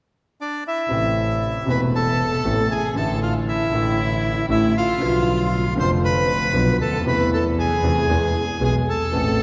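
Passionate and melancholic, this rubato tango fragment in A harmonic minor at 117 BPM opens with a reedy, bright bandoneon carrying the melody up front from 0.4 seconds, joined at 0.9 seconds by a clear concert grand piano with deep, smooth vintage tone and a rich, bowed double bass with soft attack and an airy, nasal character, while a dark violin section adds a lush second line with vibrato and portamento in the background from 1.7 seconds, the ensemble heard in the long, wet reverb of a church or concert hall over chords moving from Am through Bdim to E.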